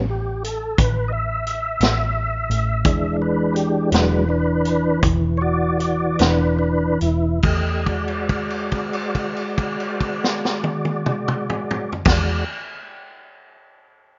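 A rough home-demo sound with a dull, capped top end frames this laid-back, soulful slow blues in a straight 12/8, heard as a fragment cut from a longer piece. A tonewheel organ sits up front through slow rotary speaker, light overdrive and chorus vibrato, its sustained chords clear with an audible key click, moving from A5 to E9 at 2.9 seconds. The organ carries a solo through the first 7.4 seconds, with the pulse slowing down from 1.5 seconds, then rests on a held note until 12.1 seconds. Underneath, a vintage muted fingered electric bass gives a round, foam-muted, punchy low end. A vintage acoustic drum kit enters at 0.4 seconds with dark cymbals, a medium-tuned snare, punchy kick, toms and hi-hat, heard mid-forward in a studio room.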